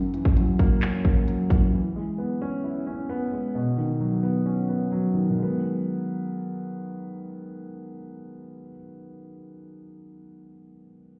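Hip hop trap in G# minor at 132 BPM with a half-time feel, hard-hitting yet melancholic, cut from a longer piece. A dark, mellow concert grand piano with deep bass sits up front through a low-pass filter, moving through F#7, E6, Badd9 and G#m7. An electronic trap kit of handclaps, crisp hats and a hard-clipped kick punches in only from 0.1 to 1.6 seconds, and the whole mix sounds muffled as if heard through a wall, set in a stone room reverb.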